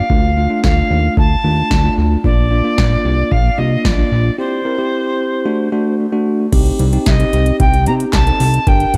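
A fat, detuned analog bass sits up front in this melancholic, cool synth-pop excerpt at 112 BPM in straight 4/4, its saturated sawtooth and square tones shaped by a filter pluck. An electro analog drum machine enters at 0.1 s with a deep kick, punchy snare, metallic hi-hats, handclaps and crash cymbal, its tape-tinged sound placed close in the mix. A bell-like tine electric piano, bright and clean, carries the accompaniment. A reedy soprano recorder sings the melody with airy vibrato from a distant position, and both the piano and the recorder trail dub echo. The chords move from Dm through Bb and C to D, with a break from 4.4 s, before a new section arrives on Cm at 6.5 s. Light reverb and an echo-heavy mix give the piece a dubby atmosphere.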